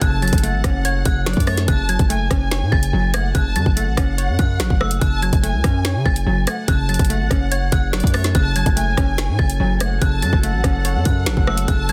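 Drill hip hop with a menacing, cold half-time feel sets a metallic, inharmonic FM bell melody ringing high over a rich, distant violin section, a hollow, bouncy square pluck with chorus and a low-pass filter, a saturated, hard-hitting 808-style bass and an up-front drill kit of finger snaps, hi-hat, rim click, a hard-clipped kick and a woody snare with soft clipping, while a smooth brass ensemble holds background chords until 1.6 seconds and returns from 8.3 seconds in this dry, dense, heavily limited cut from a longer piece.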